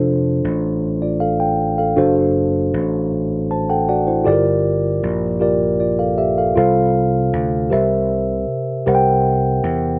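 Dry, with little reverb, this uplifting, soulful slow gospel passage in 6/8 sets a mellow, clean tine electric piano up front through its built-in speakers, adding a brief fill at 3.1 seconds, over a forward, amped vintage slap bass with a warm electric tone, moving through F6, D7/F#, Gm7, F/C and C7.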